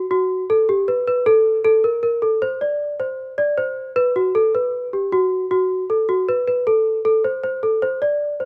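A worn celesta plays alone for the full 8.5 seconds, its bell-like, sweet tone touched by hard felt hammers and a slightly out-of-tune, dark edge, sitting up front within a close, detailed and nearly dry sound. This short contemporary instrumental fragment, cut from a longer piece, moves at 156 BPM in 7/4 with a straight feel. The delicate line stays between F#4 and D5, giving a hopeful yet restless mood.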